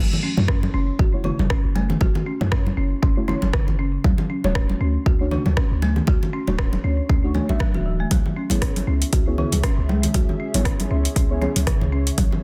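Afro house with a hypnotic, earthy mood, this short cut from a longer piece moves over chords of F#m7, Dmaj7 and C#m7. A woody, rustic marimba struck with medium mallets plays arpeggios throughout, carrying delay and sidechain pumping, while a boomy, sine-based 808-style bass with a fast attack and mellow decay anchors the low end under the same pumping. Damped, thick-skinned congas with a saturated, compressed tone sit alongside an afro-pop kit of metallic hi-hats and rim clicks, and a deep, tape-warm electronic kick stands up front as the loudest element, both drum parts touched by small room reverb. A soft, dark chord stab adds chorus, phaser and delay, with a filter sweep and moving notch running across it for the whole cut. At 8.1 seconds a moody, detuned analog pad with a wave-folded edge and slow attack enters underneath, sustaining with chorus and pumping to the end. The mix is dense and heavily limited, with little reverb overall.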